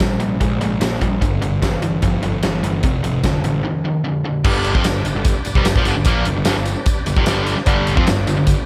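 A sunny, driving classic rock excerpt at 149 BPM in G mixolydian opens with a big, up-front acoustic drum kit with a fat snare and punchy kick, a fuzzy, overdriven picked bass, and two bright, overdriven picked guitars in the background, one of them a hollow-body, sharing a riff over Bb5, G5 and F5 chords. After a break at 3.6 seconds, the distorted guitar drops out and a very quiet, shouting tonewheel organ with key click and slow rotary speaker enters at 4.4 seconds to sustain a G chord, joined by a jingly vintage tambourine. The distorted guitar returns at 7.7 seconds, all set in light reverb.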